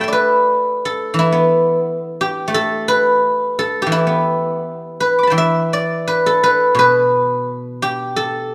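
Longing and elegant, this short cut from a longer piece of Chinese traditional music features a solo guzheng played with fingerpicks, moving in a free, rubato feel over a duple metre. The instrument sits up front with a bright, silvery, ringing tone, ranging from low B2 up to D6 over the full 8.5 seconds. A moderate recital hall reverb lets each plucked note bloom into the space.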